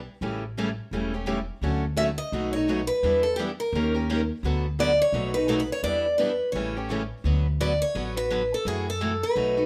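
A woody, thumpy pizzicato upright bass on gut strings opens this lively, swinging jazz manouche excerpt in D major at 171 BPM, joined almost at once by two picked steel-string acoustic guitars comping the chords (one bright and boxy with a parlour character, the other with the sheen of fresh strings, which drops out at 7.0 s), while from 2.0 s a warm, auditorium-toned third picked guitar carries the melody from the background, all in a light reverb.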